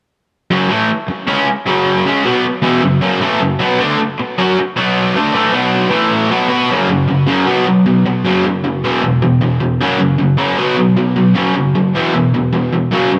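Lightly reverberant and up front, this powerful, anthemic rock fragment from a longer piece runs at 155 BPM in a straight 4/4, carried entirely by a bright, double-tracked cranked stack electric guitar, picked and overdriven with spring reverb and tape echo, ranging from E2 to B4 as it moves through F#5, B5, A5 and E5 power chords, shifting into a new section at 6.7 seconds before ending at 13.2 seconds.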